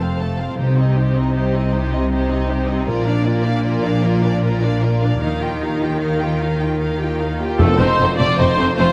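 Dark, woody double basses sit up front in this heroic, soaring cue from a cinematic adventure score, moving in 12/8 at 103 BPM in F mixolydian beneath a background cello section that lends an intense bass line. Lush, expressive violins carry the melody with vibrato and a smooth top while a second violin line and focused, distant violas fill in the harmony, and a ringing, thumb-plucked concert harp adds arpeggios over chords moving from F through Cm, Bb and Ebadd9. Very quiet hard-mallet timpani strike at 0.6 seconds, a dark cymbal swell and tam-tam join at 5.2 seconds, and the full ensemble lands on an accented return to F at 7.6 seconds, all within a moderate scoring-stage reverb.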